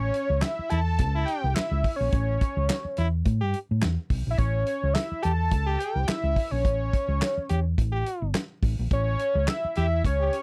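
A fat, detuned analog synth lead opens this funky, playful excerpt, carrying the melody between C#5 and A5 with chorus and phaser coloring its sawtooth-and-square tone and a sub octave beneath. The hollow-body, short-scale electric bass starts at the same moment, dark, round and punchy, sitting up front in the low register from G1 to A2. A soul drum kit enters at 0.1 seconds with a tight kick, medium-tuned snare, hi-hat and handclaps, sounding natural in a small room. At 0.7 seconds a brilliant, forceful trombone adds a second line between E4 and G4, its vibrato bright and present though lower in level than the other parts. The groove sits at 106 BPM in a straight 4/4, resting on a single A7 chord in A mixolydian. The sound is a dry, close 1970s-style studio recording with little reverb, and the excerpt is cut from a longer piece.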